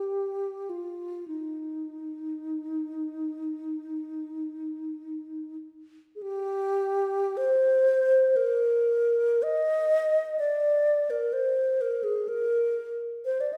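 Set in the wet bloom of a recital hall and heard from further back in the room, this short cut from a longer classical piece presents a solo alto flute, hollow and airy in tone with tongued notes and vibrato, moving between Eb4 and Eb5. The mood is nostalgic and lyrical, in Eb major and 4/4, with a free, expressive rubato between 41 and 64 BPM and tuning at A4 = 441 Hz. An opening phrase gives way at 6.2 seconds to a contrasting section that carries the mellow line through to 13.6 seconds.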